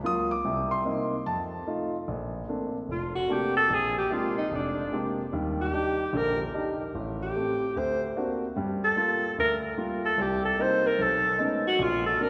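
A mellow alto saxophone with light vibrato and subtone carries a distant, roomy solo melody from 2.9 s in this sophisticated, swinging jazz excerpt at 148 BPM in Bb major, after a dark concert grand piano with deep bass opens alone and keeps up the accompaniment beneath, all set in the long, wet reverb of a church.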